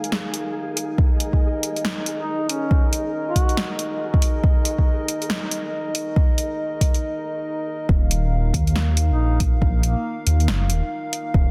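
A half-time deep dubstep groove with a swung sixteenth feel drives this heavy, meditative cut from a longer piece. A dark analog pad holds nasal, chorused chords from the opening, joined by a grainy, flickering texture murmuring in the background and a deep house kit whose punchy, overdriven snare and hi-hat sit up front. An overdriven electronic kick enters at 1.0 seconds, and a mellow duduk floats through with vibrato and scooped, folk-style notes, its phrases darkened by a low-pass filter and trailed by dub echo. After a build-up and a brief break, the drop lands at 7.9 seconds, where a detuned saw bass rumbles in, beating and saturated. The dense, heavily limited master carries light reverb.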